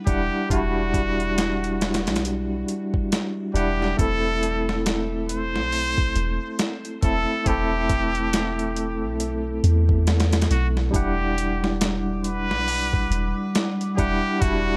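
A slow 69 BPM trip hop groove in 4/4 with a swung sixteenth feel rides a gritty, thumpy sampler-style drum kit with overdrive and small room ambience, a deep, round 808-style bass warmed by tube saturation, and a barky, lightly overdriven tine electric piano with tremolo and tape echo, while a nasal trumpet with straight mute sings a brooding, cinematic E minor melody with vibrato and tape echo over Em9 and Am/E chords, and at 11.8 seconds a warbly, lo-fi tape-like pad with chorus and 12-bit grit drifts in behind them in this excerpt from a longer piece.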